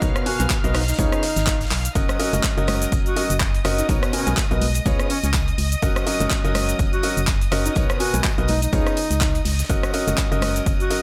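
Opening at once on a bright, woody upright piano riff with digital delay and sidechain pumping, a mellow alto saxophone melody with light vibrato and its own delay, lush bowed violin-section chords carrying 12-bit sampler grit and pumping, and a hollow, organ-like FM bass that also pumps, this feel-good, uplifting piano house excerpt at 124 BPM in F# major, swung on the 16ths, rides a punchy, tape-warm electronic kick, a layered house kit of handclaps, rim clicks, cabasa and hi-hat, and a very quiet, dry 70s kit of hi-hat, shaker and snare, with a drum fill at 1.7 seconds and close, hard-handed tambourine and congas joining at 2.0 seconds over Bmaj7, C#7 and F#6 chords in a mix with little reverb.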